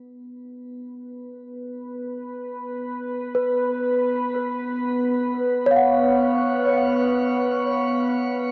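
A detuned analog drone fades in from 0.2 seconds, its sawtooth and pulse-wave tones blurred by chorus and pulse-width modulation into a mellow, evolving hum that sits up front between B3 and B4. This short ambient excerpt moves in free time, with a weightless, warm mood and a dark production wrapped in a long shimmer reverb. At 3.0 seconds the harmony settles onto a C#sus4 over a B bass, and the celesta enters at 3.3 seconds with delicate, bell-like arpeggios between B4 and F#5. The celesta is close-miked, full and sweet, its medium felt hammers giving a soft edge to each note, while a diffuse ambient delay scatters its phrases into the drone's slow-attack, long-release bed. The two parts hover together to the end.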